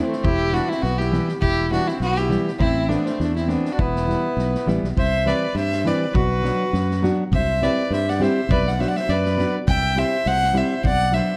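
Restless and fiery, this swung 2/4 Balkan wedding-band folk piece puts a dark, woody bowed fiddle with light vibrato up front beside a bright, growly fingered electric bass, while a reedy accordion carries a second line, a fingerpicked classical nylon-string guitar accompanies, and a vintage drum kit with a tight kick and rolled-off top keeps time, the whole band set in a moderate recital-hall reverb as the harmony shifts from Em and Am to alternating C and Bm at 5.0 seconds.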